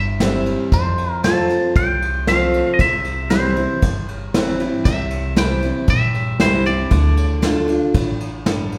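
Lonesome and heartbroken, this straight-feel honky-tonk and classic country passage at 116 BPM in 4/4 moves from C to F and back to C before landing on D minor. A twangy, clean electric guitar with a phaser carries the melody, over a bright, full-bodied dreadnought acoustic guitar whose picking brings an audible finger squeak, a woody, thumpy pizzicato upright bass on gut strings, and a vintage brush kit, entering at 0.2 s, with dark cymbals and a tight kick. A wet, large studio reverb places the band further back in the room, though the guitars and drums still sit up front.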